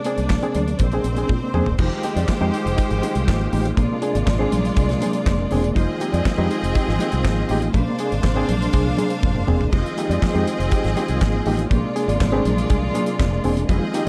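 A dark, warm production in a small room opens this glamorous, danceable disco excerpt, cut from a longer piece and rocking between Bb9 and Fm9 chords. Up front, a damped 70s drum kit with a fat snare, tight kick, dark cymbals and handclaps drives the groove, with fills at 1.3 and 9.2 seconds, while high-tuned congas with thin skins sit bright in the background. A barky, reedy electric piano enters at 0.1 seconds through its built-in speakers, lightly overdriven and pulsing with fast tremolo, and a fingered electric bass follows at 0.2 seconds, round and foam-muted. A lush, focused string section carries a second line with vibrato, and a tonewheel organ holds sustained chords behind it, clean with key click, chorus vibrato and a fast rotary speaker. Beneath it all, a mellow, compressed electric guitar adds very quiet fingered accompaniment.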